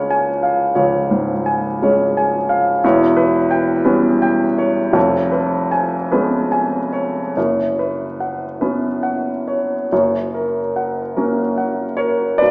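A warm concert grand piano carries this romantic nocturne alone, its deep bass reaching down to C#1 and its upper register extending to G#5. The mood is wistful and mournful, unfolding in a slow 12/8 at 45-60 BPM counted in dotted quarters, with a free, rubato feel. Tuned to A4 = 444 Hz, the harmony moves from C# through C#m7b5/E and C#7/E# before settling on F#sus4 at 7.4 seconds and resolving to F# at 9.9 seconds. The piano sits up front within a wet recital hall reverb that lingers for 1.8 seconds, evoking a church or concert hall, though the overall sound has a small speaker quality. This short passage of about 12.5 seconds is cut from a longer piece.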